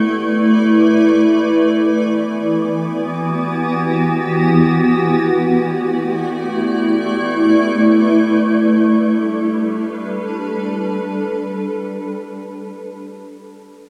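A bright, blurred granular cloud pad plays alone and up front in this luminous, peaceful ambient fragment, its slow-attack triangle tones sustaining through Asus4, Em9 and A9sus4 before settling on G at 8.4 seconds, bathed in tape echo and a wet echo-chamber reverb.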